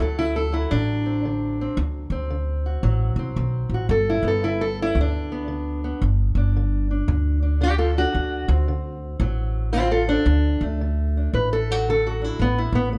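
Soulful and gritty, this acoustic country blues excerpt moves at 113 BPM in 4/4 with a swung eighth-note feel, set in D mixolydian. A fingerpicked steel-string acoustic guitar carries the melody throughout, taking a solo across the full 13 seconds, its parlour tone dark and boxy as it ranges from D2 up to B4. Alongside it, a pizzicato upright bass with steel strings holds down the low end between G1 and D2, sounding woody and thumpy. Both instruments sit up front, captured by close, detailed microphones with a light touch of reverb. The harmony moves from D7 to G at 3.9 seconds, back to D7, and lands on A5 at 12.4 seconds, where the passage breaks off mid-piece.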